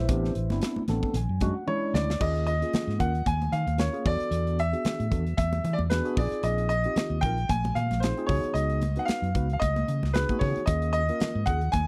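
Swung sixteenths at 113 BPM in 4/4 drive this slick, driving electric jazz fusion in Eb minor, where a punchy, up-front modern studio drum kit, a growly fingered electric bass and damped, high-tuned congas in the background support a mellow tine electric piano with lush chorus that plays a fill from 0.6 s. A clear, open grand piano melody enters at 1.7 s together with a drum fill and carries on over suspended ninth chords, all captured in a dry, close 1970s-style studio sound.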